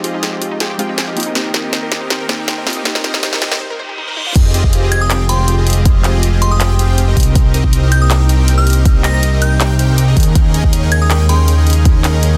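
A big, bright, detuned sawtooth polysynth carries the riff through this emotional, lush future bass excerpt in a half-time feel, over airy breathy pad chords, a soft round pluck and a warbling unison pluck arpeggio in the background, as the big-room dance kit's punchy snare, handclaps, hi-hat and crash drive a filter-swept build-up with a quiet riser and reverse cymbal, before the drop at 4.4 seconds brings in a fat, thick analog bass and a punchy up-front electronic kick, soon joined by a glassy, crystalline bell melody, all in a dense, dry, heavily limited modern mix.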